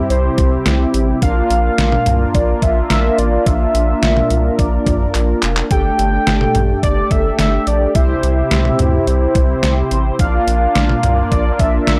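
A wistful, nostalgic synth-pop passage, cut from a longer piece, opens with a velvety, chorused synth lead carrying the melody over mellow, phased synth brass and a bold, detuned analog pad holding sustained chords that move from C to Bb to Gsus2 and back. A round, deep analog bass with transformer saturation and an overdriven 8-bit drum machine sit up front, its thumpy kick, fat snare, hi-hat, handclaps and toms breaking into a fill at 5.1 s. The lead trails tape echo, and the recording has a dry, gritty hardware character set in a digital ambience.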